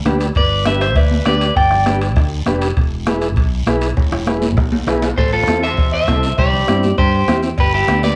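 A fiery, passionate cumbia opens on a mellow combo organ with heavy vibrato, a warm fingered electric bass up front, a soft-beater bombo, and background congas, raspy guiro, and ringing timbales and cowbell. At 0.4 seconds a twangy, slightly broken-up electric guitar takes the melody, bathed in spring reverb and tape echo, with a clear, forceful clarinet carrying a jazz-style second line. A drum fill at 4.0 seconds leads into a new section at 5.2 seconds, where the guitar returns to carry the melody over the small-room groove.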